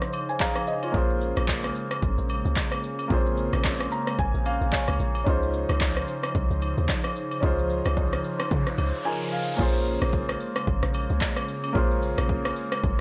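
This late-night, deep amapiano excerpt opens with a warm, present grand piano playing accompaniment and short fills, alongside an airy, breathy pad holding sustained chords that pump under sidechain and shimmer with chorus. A punchy, layered deep house drum kit sits up front with smooth hats, handclaps, rim clicks, shaker and a crash, while agogo bells and woodblock add an acoustic percussion layer from a live room. At 0.9 seconds a round, dark log drum bass arrives, its fast attack and decaying tones giving the groove a percussive low end. The harmony moves between lush major and minor ninth chords, and the swung feel keeps the rhythm loose. An electronic riser builds from 8.3 seconds into a drop at 9.6 seconds, where the full groove carries on to the end. The mix is dry and gritty, with a hardware character and little reverb.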